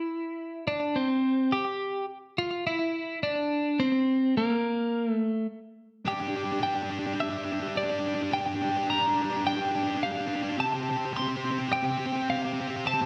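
A large studio reverb with a digital sheen surrounds this brooding, cinematic rock fragment at 106 BPM in a straight 4/4, tuned to A4 = 441 Hz. An up-front, clean and compressed twelve-string electric guitar carries the picked melody with slapback echo, playing alone until a warm, double-tracked fuzz guitar riff enters at 6.0 seconds. From there the passage builds over a Dsus4 chord that shifts to Fadd9 at 10.6 seconds.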